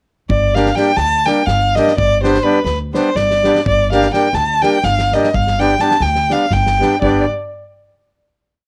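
A bowed violin leads up front with vibrato and portamento, spinning expressive hook phrases over a fiery, restless Balkan wedding-band groove in 7/8 at 250 BPM (eighths), tuned to A4 = 444 Hz, its chords shifting between Gm and G. A reedy accordion enters at 0.6 s with full off-beat triads, while a woody, thumpy pizzicato upright bass plays root and fifth on the main beats and a small-room drum kit with a fat snare and tight kick sits in the background. Light reverb surrounds this short, complete piece, which closes on a final chord from 7.0 s.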